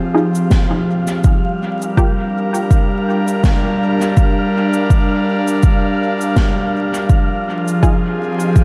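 Meditative and hazy, this ambient dub excerpt drifts at 82 BPM in 4/4 with a gentle 16th-note swing, moving from Fm7 to Gm7 and back to Fm7 at 7.1 seconds. An airy, breathy pad with chorus holds sustained chords up front, while a wind-like tuned noise texture hovers high with its own reverb, and a muted, resonant filtered chord stab with phaser and dub echo sits in the background, sounding from 0.1 to 2.1 seconds and briefly again near the end. A hall-toned cabasa and snare carrying dub echo enter at 0.3 seconds, and an overdriven, deep electronic kick anchors the groove from 0.5 seconds, all within an echo-heavy mix flecked with vinyl crackle.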